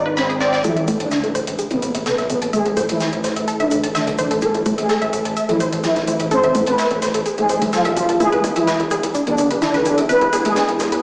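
A deep, moody ambient pad and a gritty, distorted synth bass open this dark, cinematic melodic techno excerpt in A harmonic minor at 127 BPM, with a lush, detuned unison pluck spinning tape-echoed arpeggios from 0.1 s. Up front, a juicy, resonant sweep polysynth carries the melody through chorus, cassette tape coloring and digital delay, its filter sweeping along with the pad's during a build-up that runs from 0.6 s to the end. A crisp, airy fusion drum kit with a high-tuned snare, shaker and hi-hat keeps a straight 4/4 pulse, joined at 0.6 s by metallic, layered electronic hats and a very quiet, muted dub chord stab colored by phaser. The harmony moves from G# to Am at 0.6 s and then to E at 8.2 s. A lush hall reverb and small-room ambience surround the mix, which sounds as if played on a big sound system in a bare room, alongside a small-speaker edge.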